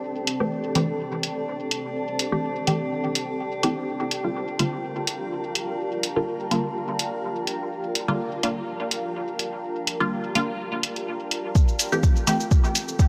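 A muted, wave-folded dub chord stab with phaser, dub echo and sidechain pumping sits up front in this cavernous, nocturnal dub techno excerpt at 125 BPM in A phrygian, moving from Am7 to Gm7 over a cloudy granular pad and an eerie, nasal FM drone in a huge ambient reverb, while low-pass-filtered electronic hi-hat and cabasa play with a light swing on 16ths and a filter sweep runs on the pad until 11.6 s, where the drone stops, the sweep shifts to the stab and a deep, tape-warm electronic kick enters.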